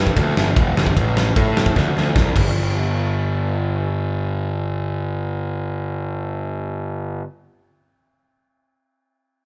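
A straight, driving 4/4 pulse at 151 BPM kicks off this rowdy, rebellious punk rock fragment, cut from a longer piece and captured with a band playing live in one room under light reverb. A big rock drum kit sits up front with a dark, smooth acoustic sound, a fat snare and a punchy kick alongside crash and ride cymbals, playing a fill from 1.8 to 2.6 seconds and stopping at 2.5 seconds. A picked electric bass runs from the start to 7.2 seconds, ranging from E1 to A2 with a bright, growly fuzz tone, direct and amped and pushed through overdrive. Once the drums drop out, the bass carries the second section by itself, its gritty edge exposed in the room. The whole passage feels raw and confrontational, built on just these two up-front parts.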